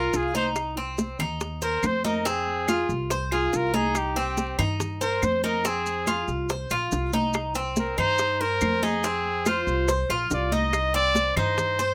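A bright trumpet with vibrato and a smooth top solos up front from the start over a picked, metallic Cuban tres playing arpeggios on double strings and a growly, thumpy pizzicato upright bass, while round, low-tuned bongos, thick-skinned high-tuned congas, grainy maracas and woody claves, which enter at 0.6 seconds, fill out this warm, danceable Cuban son and guajira at 142 BPM, heard as a cut from a longer piece in a rough home demo mix with little reverb.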